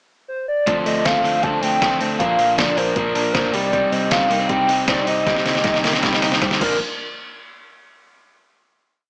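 Jangly indie pop, bright and breezy: a hollow, woody clarinet-like synth lead with chorus and vibrato sings a motif-based melody alone from 0.3 s, and the band arrives at 0.7 s for a short pre-chorus over Dm7, Bb and Cm. Overdriven electric guitar strums folk-style barre chords, a clean direct-recorded guitar rolls fingerpicked arpeggios through spring reverb, and a dark, foam-muted vintage bass drives eighth notes in the background. An up-front, gritty, pitched-down trip hop sampler-style kit with a thumpy kick plays a dance-floor beat with off-beat open hats, and its fill from 5.3 s leads to a final hit, with the mix set in a moderate large studio reverb and a small speaker sound.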